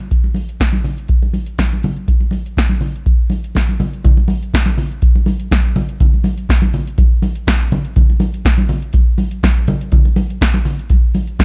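An up-front, dry analog drum machine opens this danceable, joyful disco excerpt at 122 BPM in a straight 4/4, with a deep kick, punchy snare and metallic hi-hats. Damped, medium-tuned acoustic congas with a thick skin join at 0.2 s, sitting lower in the mix and carrying a small-room sound. The dark production keeps reverb minimal, and the groove moves into a new section at 4.0 s that runs to the end.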